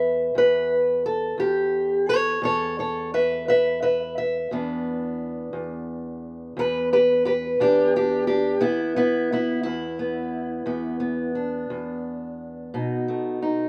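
Acoustic country blues in a gritty, soulful 12/8 mood, this short excerpt features a lone fingerpicked steel-string parlour guitar, dark and boxy and up front with a slapback echo, moving from A7 to E5 at 4.5 seconds and on to B7 at 12.7 seconds in a dry outdoor setting.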